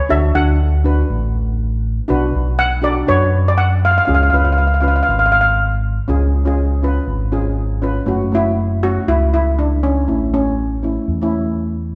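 A wet recital-hall reverb surrounds this tense, dramatic calypso clip in F# minor at 120 BPM with a light swing, where a shimmering double-seconds steel pan carries the melody up front with medium rubber sticks, a dry, close-miked cello pan fills out the chords from D through Bm, C#, F#m7 and A, and a dark, round fingered electric bass anchors the low end throughout its roughly 12 seconds.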